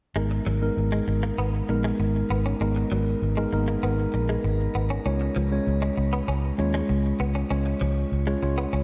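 A straight, even pulse in four carries this short pop excerpt, which sets a nostalgic and dramatic mood. A vintage muted fingered electric bass sits up front from 0.2 to 8.8 seconds with a dark, round, punchy, foam-muted tone, while a mellow tine electric piano plays the accompaniment, also up front, heard through its built-in speakers and coloured by phaser and shimmer reverb. A direct-recorded clean electric guitar plays a bright, picked, compressed riff, set lower in the mix and treated with ensemble chorus, digital delay and shimmer reverb. The harmony rests on G#madd9 before moving to C# at 5.1 seconds. A moderate plate reverb gives the whole production a dusky, warm space.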